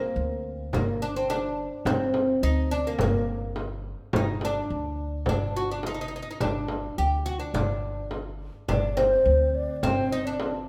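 A moderate recital-hall reverb wraps this hypnotic, longing Arabic maqam ensemble cut from a longer piece, set in G minor at 106 BPM in a straight 4/4. A bright, woody fretless oud with double strings carries the melody up front from the start, over a dark pizzicato upright bass on steel strings, while a small frame drum played with soft hands joins at 0.7 seconds. At 8.7 seconds a breathy, mellow low ney enters with a tongued, expressive second line full of vibrato.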